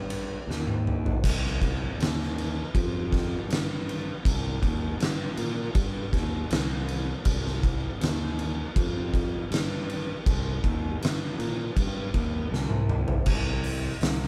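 Stoner and doom metal in C minor at a slow 80 BPM, ominous and brooding, with a fuzz-soaked fingered electric bass growling up front, overdriven and punchy, alongside an oversized low-tuned acoustic drum kit with a fat snare, a punchy kick and dark cymbals. The drums sit in a bright stone room that pumps around them, with fills at 0.5 and 12.5 seconds framing the long central stretch. The band plays live in one room with light reverb, and the piece is cut from a longer performance.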